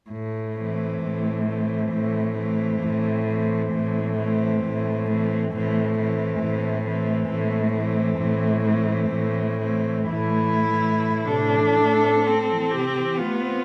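A lone bowed cello opens this elegiac, yearning classical fragment at 0.1 s on a low A, its rich, focused tone carrying vibrato and a smooth top, and at 0.6 s three more solo cellos join in a flexible, rubato triple metre. A dark, woody melody cello sings with vibrato from a distance, while a warm background line adds expressive portamento and an up-front accompaniment cello plays smooth and even. The music turns to a new passage at 11.3 s, the bass cello stops shortly after at 12.1 s, and the ensemble sits in moderate recital-hall reverb.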